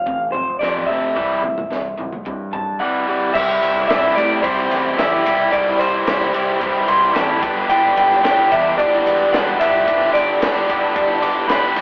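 A bright, up-front garage guitar riff, overdriven and double-tracked, opens this upbeat, carefree indie rock piece at 110 BPM alongside a slightly broken-up, lo-fi lead guitar with harmonic tremolo through a small old amp and a growling, overdriven fingered bass, with a compact cocktail drum kit (dark and smooth, with a high-tuned snare and punchy kick) entering at 0.1 s, the band playing live together in a stone room with a telephone-like tone as the chords move through F, C, C6 and G.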